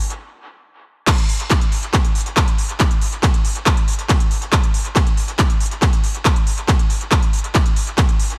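Techno with a driving, hypnotic pull in straight 4/4, cut from a longer piece. A layered electronic drum kit of crash, handclaps, smooth hi-hats and ride opens the track, soaked in dub echo, before a brief stop gives way to a drop at 1.1 seconds, where a heavy, tape-warm kick enters up front. The mix is dry of reverb but echo-heavy, and both drum parts were re-recorded in a small room.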